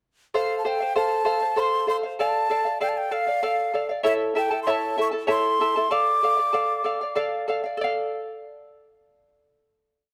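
In a straight 6/8 at 65 BPM in D minor, this brief, melancholic and wistful Andean folk piece places a breathy large quena up front, its crisp, chiffy attack and vibrato carrying a motif-based melody until 7.2 s, over a bright, shimmering charango that strums open chord shapes on double strings through F, Dm and A before sounding alone on a final chord from 7.8 to 10.1 s in light reverb.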